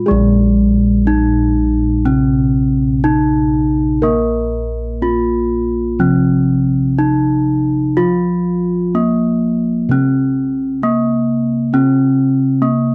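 A bronze metallophone struck with a wooden mallet carries the melody up front, its ringing, metallic tone leading this serene, ceremonial Javanese gamelan excerpt in Bb slendro at a slow 62 BPM with uneven beats. Beneath it, a second bronze metallophone played with padded disc mallets adds a mellow, soft accompaniment, while bossed gongs supply a round, beating bass that sits close and full. The dry, close 1970s-style studio sound carries light reverb, and all three parts play together from the opening, the gongs stopping at about 12.7 seconds and the metallophones at about 12.9 seconds, cut from a longer piece.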